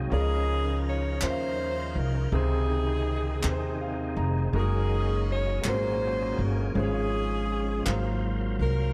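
A slow gospel passage in a straight 6/8 opens with grand piano, organ and upright bass sounding together, joined almost at once by a saxophone section carrying the melody. The mood is hopeful and reverent, with harmony moving through rich extended chords that briefly touch home near the close before ending on a dominant chord. The piano is clear and intimate, its action noise faintly audible as it accompanies, and it steps forward with a brief fill between 3.4 and 4.5 seconds. Beneath it, a gritty, overdriven tonewheel organ holds thick sustained chords with key click, percussion and chorus vibrato, spun through a fast rotary speaker. The woody, dark pizzicato of the upright bass sits up front and anchors the low end, while the close-miked sax section sings with jazz-style vibrato. Crisp, compressed group handclaps come in at 1.2 seconds and drop out at 8.2 seconds, all set in a small room's reverb in this short cut from a longer piece.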